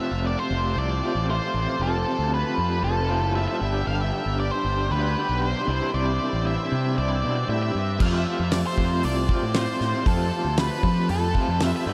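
An octave-fuzz lead guitar opens this psychedelic rock excerpt with a dark, distorted melody, up front and trailed by a diffuse ambient delay, while a buzzy combo organ with light vibrato holds sustained chords in the background. Beside them, an electric guitar through a small old amp plays a slightly broken-up, lo-fi riff with tremolo, and from 0.1 seconds a punchy, overdriven fingered bass sits up front beneath it all. The mood is trippy and kaleidoscopic at a steady 116 BPM in a straight 4/4, with the harmony moving from F to G, then Cadd9, and back to F at 8.0 seconds. At that same moment a damped 70s drum kit enters with a fat snare, tight kick, hi-hat and crash, its dry sound set against the dreamy mix soaked in a huge, long-tailed reverb.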